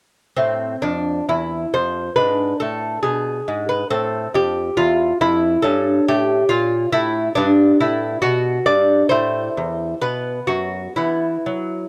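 Solemn and grave, this brief passage cut from a longer piece is a baroque-style classical dance for solo lute. The lute plays from 0.4 to 11.9 seconds, fingerpicked on gut strings with double courses and some octave-doubled strings, giving a bright, delicate voice that sits up front. The beat is uneven and the phrasing moves with a free rubato. The harmony moves through a diminished chord and a darker minor colour before settling toward a closing E5 at 11.0 seconds. The recording is dry and close in a small room, with a 1970s-style studio intimacy that keeps every plucked note clear.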